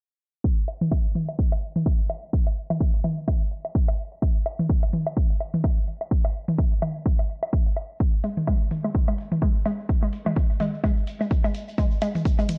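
A punchy, up-front electronic kick opens this cool, sparse minimal techno excerpt at 127 BPM with swung sixteenths, joined almost at once by analog-delayed electronic woodblock and toms as a filter sweep runs throughout; a grainy tube shaker slips into the background at 8.0 s, and at 8.2 s metallic hi-hats arrive alongside a hollow, nasal, detuned square-wave pluck riff around G#3, bouncy and treated with chorus, tape echo and sidechain pumping, in a dry, gritty recording with digital ambience.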